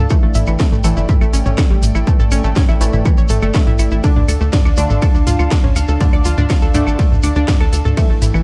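A dark, detuned analog pad, a bright, round analog pluck playing arpeggios with delay, muted dub chord stabs in the background, and a tight, punchy sequencer bass all pump together from the first moment of this hypnotic, melancholic melodic techno cut at 122 BPM in D minor. From 0.1 s, an overdriven, heavy electronic kick sits up front, joined by a techno kit with a cracking snare, smooth hats, claves, ride and toms, plus a grainy, close acoustic shekere tucked behind. The brief passage moves from A7sus4 to Dm at 4.0 s, with lush chorus on the stabs and a dark, warm digital ambience throughout.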